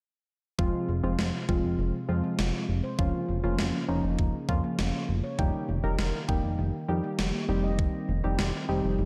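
Cool and nocturnal, this synth-pop excerpt moves at a steady, straight pulse in 4/4, cut from a longer piece. Analog keys, round and mellow with a sawtooth edge, a filter sweep and chorus, carry the accompaniment up front through a progression that moves from Fm to Bbm/F, Eb/F and Cm/F over a held F in the bass. Beneath them, a glossy, nasal synth bass built from pulse and sawtooth waves has a plucked filter attack, sustained notes and chorus, sitting dark and prominent in the mix. A gated 80s digital drum machine lays down a thumpy kick and a snare drenched in gated reverb, with a tape-softened, sampler-like character, and it drops out at 8.5 s while the other parts ring on to 9.1 s. Further back, a handpan with a ringing, meditative tone plays soft arpeggios through a delay. The whole production feels dark and enveloped in a lush hall reverb.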